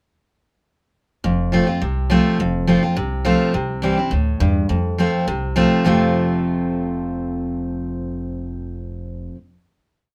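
This short bluegrass piece has a light reverb around a rustic sound, with a full-bodied acoustic guitar sitting up front. At a brisk 208 BPM in 4/4 with a straight feel in F major, the mood is driving from the moment both instruments enter at 1.2 seconds. The picked steel-string dreadnought guitar carries the accompaniment, alternating bass notes with strums and adding bass runs between them. Beneath it, a woody, growly upright bass plays pizzicato in a two-beat pattern of roots and fifths, with walk-ups leading into the changes. The harmony moves from F to C and back to F before the piece settles on a final chord from 5.9 seconds, and the guitar ends at 9.4 seconds.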